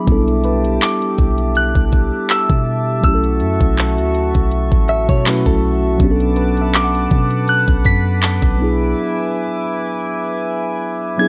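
A smooth, up-front R&B drum kit with a knocking kick, metallic hi-hats and handclaps anchors this longing, late-night contemporary R&B excerpt at 81 BPM with a gentle 16th-note swing, alongside a deep, round 808-style bass and a mellow tine electric piano. A shimmering chorused pulse-width pad sustains chords over A7sus4/B, F#m7/B, Bm7 and E7/B, while a crystalline FM synth bell carries the high melody from 0.8 s, a faint, soft pluck glints in the background, and a direct-recorded clean electric guitar adds lush chorused arpeggios around 4.9 s. The dry mix sits on worn, warbling cassette tape with pitch drift. The drums drop away at 8.6 s and the bass at 8.9 s, leading into a break at 9.0 s that leaves the keys, pad and bell.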